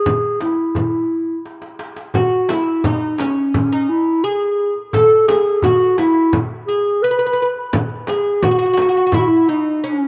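This Turkish makam ensemble piece, cut from a longer work, moves at a stately yet festive 86 BPM in a straight 4/4, tuned to A4 = 438 Hz. A dark, soft-attacked clarinet carries the melody as the up-front solo voice, played in a classical style with a distant, roomy quality. Beneath it, a crisp metal-shelled darbuka played with soft hands sits alongside a warm frame drum struck with hard hands, and a drum fill arrives at 1.4 seconds as the opening passage gives way to the next. From 2.2 seconds a bright, woody fretless oud joins on a second line, its plectrum-plucked double strings sitting lower in the mix than the clarinet and sharing its range. A moderate spring reverb lends the whole ensemble a sense of space.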